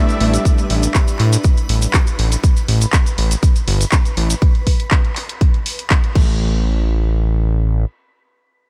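This dreamy, expansive progressive house excerpt at 121 BPM opens its Em7 drop with a brief nasal, warbling unison lead through delay, over a lush, detuned unison pad carrying chorus, vintage 12-bit sampler grit and sidechain pumping. A reversed, bright, granular swelling texture drifts in the background alongside grainy acoustic cabasa and a pop drum kit of crash, handclaps and hi-hat, while a fat sawtooth analog bass sits up front and a punchy electronic kick drum enters at 0.5 s. The chords give way at 6.2 s, and the bass carries on until 7.9 s.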